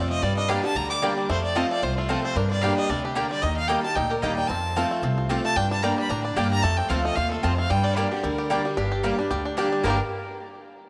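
A clear, focused fiddle carries the melody with light vibrato from the first moment of this excerpt. A twangy, fingerpicked banjo shares the melody from the background, a boxy archtop guitar adds picked accompaniment, and a thumpy, woody upright bass with gut strings sits up front. This is rustic, lonesome bluegrass in G minor at a brisk 225 BPM in 4/4, with a swung eighth-note feel over chords moving among Gm, F and Eb. At 0.5 seconds a double-strung mandolin joins in the background with short stabs. Near the close, at 8.8 seconds, a metallic, nasal lap resonator guitar adds a second line with slide. A moderate plate reverb lends the performance a sense of space.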